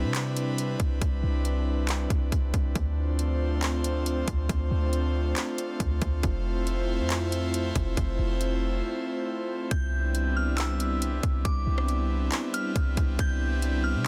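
Atmospheric cloud-rap hip hop with a dreamy, blissful half-time feel, where an airy, breathy pad holds chorused, sidechain-pumped chords over a deep, boomy 808-style bass and a trap kit of hard-clipped kick, metallic hats, handclaps and rim clicks, before a brief break at 8.8 seconds gives way at 9.7 seconds to a glassy, crystalline FM bell melody trailed by delay and a low-pass filter, all in a dense, heavily limited digital ambience cut from a longer piece.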